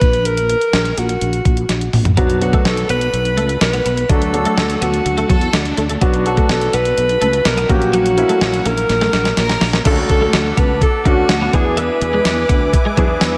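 A straight 4/4 pulse at 125 BPM from a thumpy, fat-snared 12-bit drum machine drives this urgent, dramatic 1980s-style pop excerpt in B minor, with a breathy alto saxophone carrying the melody up front with vibrato and slapback echo over a growly fretless bass with ensemble chorus, joined at 2.2 seconds by a polished baby grand piano and a compressed twelve-string electric guitar riff in the background, then brief distant bowed violin-section phrases and, from 9.9 seconds, an airy, detuned sawtooth pad as the chords move to Dmaj7 and E7, the mix set in a lush hall reverb for a big arena sound.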